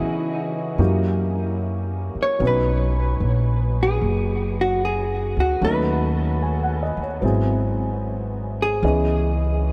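Smoky and wistful, this short cut from a longer jazz ballad moves with a relaxed swing through a chord sequence that opens on C#m7 and settles on C#m9. A dark, clean, picked hollow-body electric guitar carries the melody with a compressed tone and a diffuse ambient delay, while an intimate upright piano with woody, natural character and audible action noise supplies the accompaniment. A warm pizzicato upright bass anchors the low end, everything sitting up front in a dreamy mix soaked in a huge ambient reverb.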